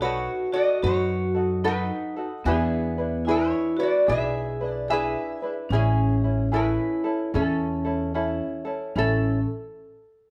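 Swung eighths in an easy 4/4 give this relaxed, sunny Hawaiian fragment, cut from a longer piece, its gentle lilt as the chords move from B7 through E7 to Amaj7 and settle on A at 9.0 seconds. Up front, a lap resonator guitar carries the melody with a nasal, metallic slide tone played with fingerpicks. A ringing vibraphone with medium hard mallets and slow motor vibrato adds a second line in a boxy small-room sound, while a light, fingerpicked tenor ukulele and a woody, thumpy pizzicato upright bass on steel strings fill out the band, all playing live together in a moderately reverberant large studio.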